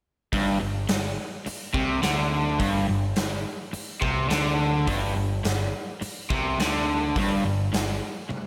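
A raunchy, swaggering blues rock and southern rock power trio excerpt opens at 0.3 s with a crunchy, double-tracked overdriven guitar riff on a G5 chord sitting up front, driven by a growling, overdriven picked bass and a huge arena drum kit with a punchy kick and medium-tuned snare, all bathed in lush hall reverb before a drum fill at 8.3 s.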